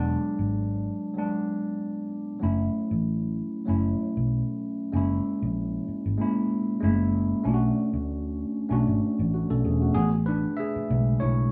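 A lightly swung 16th-note groove at 96 BPM in 4/4 carries this romantic, lush 1970s-style soul excerpt in A major, where a worn, slightly out-of-tune tine electric piano with phaser, heard through a combo amp, accompanies over E7, F#m7, F#7 and Bm7 before a brief solo over Amaj9 at 10.0 s, while a dark, round, foam-muted fingered electric bass sits up front alongside it in a moderate stone-room reverb that captures the pair playing live together.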